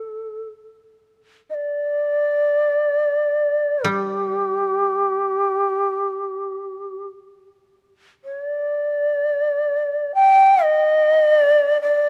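The music unfolds in free time, a solitary and still excerpt of Japanese traditional chamber music, tuned to A4 = 438 Hz. A long shakuhachi carries the melody throughout, its end-blown bamboo tone airy and mellow, with vibrato, tongued attacks, a touch of chiff and rolled-off highs, placed up front and moving between G4 and G5. From 3.8 to 6.7 seconds a koto enters beneath it as quiet accompaniment on G3, played with fingerpicks and sounding woody and dry, also close and present. The phrase is stated twice, with the second statement beginning at 7.3 seconds. A moderate plate reverb lends the space a lingering air, and the passage is cut from a longer piece.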